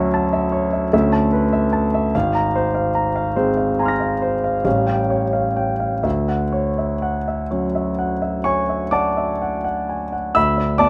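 A concert grand piano, intimate and up front with deep bass, long sustain and audible action noise, carries this hazy, dreamy excerpt of impressionist classical solo piano in a rubato 9/8, drifting through lush extended chords under light reverb before settling on Dmaj9 at 6.0 s and closing on a bare D5 at 10.4 s.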